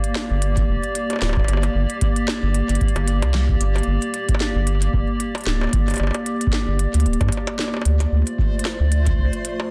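IDM in G minor at 113 BPM, this intricate, eerie fragment from a longer piece moves in 4/4 with a light swing on the sixteenths. A warbling, detuned tape-like pad holds sustained chords throughout, its lo-fi, nostalgic tone softened by chorus and its own reverb, while the harmony rests on G minor before shifting to D minor near the close. From the opening moment an organic-sounding electronic kit of bongos, crisp hats and a woody snare plays along, treated with delay and given the air of a large room. Underneath, a round analog bass with a fast attack and dark, wave-folded edge soon enters up front in the low register, joined shortly after by a dry, deep electronic kick. At 8.1 s a reversed, granular texture swells quietly in a higher register, its dreamy, bright shimmer bathed in reverb, over a dense, heavily limited master with a digital ambience.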